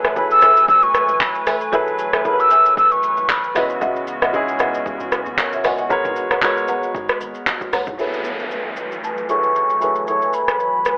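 Heard through a thin, telephone-like filter with light reverb and digital ambience, this soulful, late-night amapiano cut puts an overdriven deep house drum kit up front, with a deep kick, handclaps, hi-hat, rim click, shaker and toms, while a round, dark log drum bass sits in the background before dropping out near the end. A short-sustained grand piano and a hollow, flute-like pad with chorus, both low-passed, carry minor eleventh chords, and a dry, woody marimba adds delayed stabs in the background. A breathy, mellow concert flute leads up front from 0.2 seconds and returns at 9.0 seconds, as an electronic downlifter sweeps through the closing section.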